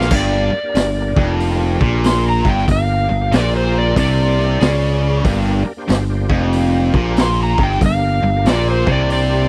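The sound is close and dry, like a 1970s studio session with little reverb, and this short cut from a longer piece lands as heavy, gritty blues rock with a southern rock edge and a swung eighth-note feel. An overdriven slide guitar carries the melody as a solo across the whole 9.5 seconds, its tone thickened by tape echo. Beneath it, a bright, double-tracked overdriven electric guitar drives a low riff up front, alongside a growly, punchy picked bass. The raw garage drum kit sounds like a small room, saturated with a boomy kick, a medium-tuned snare and a rolled-off top, adding hi-hat, crash and splash cymbals before stopping at 9.3 seconds. From 0.1 seconds a full, thick tonewheel organ holds overdriven chords in the background, turning through a slow rotary speaker with chorus vibrato.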